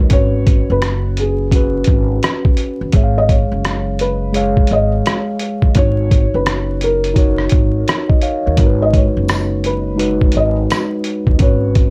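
Vinyl crackle and light reverb frame this reflective, nostalgic lo-fi hip hop excerpt at 85 BPM in G# dorian with a swung 16th feel, where a gritty, pitched-down sampler-style drum kit with a thumpy kick, hi-hat and rim click sits up front beside a woody pizzicato upright bass, a clean tine electric piano carries cassette-tape-coloured chords from C#7sus4 to G#m7, a dark, felt-muted upright piano with audible action noise plays a short-sustained melody through tape echo, and a jingly tambourine slips in quietly in the background at 9.3 seconds.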